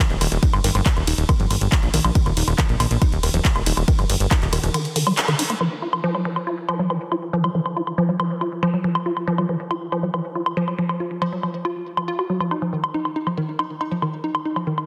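A dense, heavily limited modern master with a moderate plate reverb frames this intense, psychedelic trance excerpt, cut from a longer piece and driving along at 139 BPM in a straight 4/4. It opens on a drop, where a heavy, layered electronic kick, re-recorded in a large room, pounds from 0.4 to 4.4 seconds beneath a punchy, funky analog bass whose sawtooth and pulse-wave tones snap with a fast filter pluck and decay, sitting up front between Eb1 and Bb1. Running the full length is a woody, wave-folded pluck riff between Eb3 and Gb4, its triangle and sine tones edged with a noise layer, mellow yet percussive, treated with chorus, digital delay and sidechain pumping. The up-front techno kit of handclaps, hi-hat, ride cymbal and woodblock is darkened by low-pass filtering on its hats, percussion, snare, cymbals and room sound. A band accent lands at 5.2 seconds, near the end of the opening drop. 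From 5.6 seconds the second section carries on with the pluck riff and drum kit, while the Eb5 harmony of the opening drops away and then returns at 12.5 seconds.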